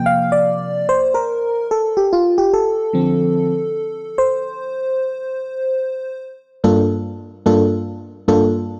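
This short cut from a longer reggae piece has a dry, close sound in the manner of a 1970s studio, with a touch of digital ambience around it. The only voice is an FM electric piano layered with a soft pad, placed up front and treated with chorus, its tones striking with a fast attack and then decaying into a lush, dreamy haze. The mood is smooth and bittersweet, carried by a swung feel in common time. The piano plays alone from the start, moving from C7sus4 to Dm7 before the passage shifts at 6.2 seconds onto Gm7. Its range stretches from G2 up to F5, and it rings until 8.4 seconds.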